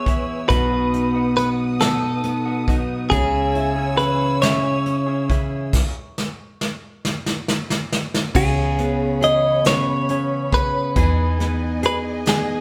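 Melancholic and dramatic, this brief cut from a six-eight pop ballad in C# minor moves at a slow 46 BPM, with a bright, twangy clean electric guitar carrying the melody up front over fingerpicked nylon-string guitar, a quieter background electric guitar playing arpeggios, a round, foam-muted electric bass and a dark, woody, lush string section holding sustained chords. A soft brush kit with a punchy kick sits up front, and the band shares a stone room's reverb. A stop with a drum fill from 5.7 to 8.3 seconds leads into a second section on C#m7 and Emaj7 chords, where the nylon guitar's finger squeak and the strings' vibrato add to the live-in-one-room sound.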